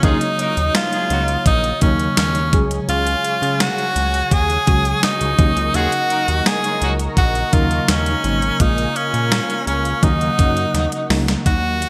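An edgy, up-front tenor saxophone with vibrato and scooped notes carries the melody through this dramatic, moody 1980s-style pop excerpt in Eb minor at 84 BPM, over a warbling FM electric piano with tremolo, a fat detuned analog bass, a smooth chorused analog pad in the background, clear horn section stabs at 0.0 and 5.7 seconds, and a thumpy, overdriven 12-bit drum machine with gated reverb that plays a fill at 10.7 seconds, all set in bright digital production with a plate reverb.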